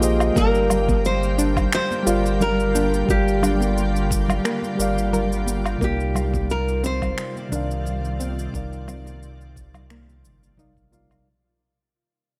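A light reverb and digital ambience give this short sunset chillout excerpt an airy sense of space, and a fade-out begins at 4.0 seconds. The mood is wistful and relaxed, with a gentle swing on the sixteenths over Gm7 and then Cm11. A mellow tine electric piano with tape echo and a shimmering, ethereal pad with chorus carry the harmony, while a deep, round sub bass sits up front. A bright, full-bodied nylon-string guitar takes the melody from 0.4 seconds, fingerpicked with audible finger squeak and roughened by 12-bit sampler grit and tape echo. Entering at the same moment, a soft pluck plays arpeggios in the background, coloured by chorus, cassette tape and tape echo. Underneath, a knocking electronic kick, an overdriven layer of electronic cabasa, woodblock and finger snaps, and ringing congas and bongos set further back keep the groove moving.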